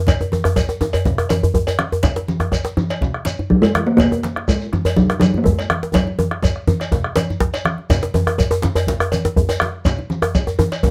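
A short-ringing talking drum sings up front from 3.5 to 7.7 seconds, carrying the melody over a driving, powerful West African drum ensemble in a straight 4/4 feel, with a drum fill arriving at 5.9 seconds. Beneath it, a tight, cracking djembe with metal rattles sits close and forward beside a deep, dark bombo that is also up front, while a second, dry djembe stays in the background and warm, thick-skinned congas add body. A vintage, band-limited cowbell and a grainy, mellow shekere fill out the texture, all captured with close, detailed microphones and light reverb in this cut from a longer piece.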